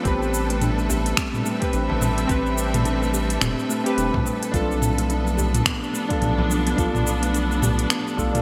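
The excerpt opens with a deep, mellow chord stab, chorused and delayed, alongside a lush bowed string section holding sustained chords, both pumping against the sidechain. This is organic downtempo in A minor at 107 BPM in 4/4, with a 16th-note swing that gives its hypnotic, warm mood a loose sway as the harmony moves from Am9 to Bm7b5 at 4.5 seconds. A round, dark analog bass and a layered electronic kick arrive almost at once, joined by an up-front electronic kit of finger snaps, crisp hats, shaker and toms, overdriven and wrapped in gated reverb. A woody kalimba enters at 0.5 seconds with ringing, delayed arpeggios, and a very quiet frame drum struck with hard hands sits far beneath from 0.9 seconds. A lush hall reverb and bright 1980s-style digital production frame the short passage.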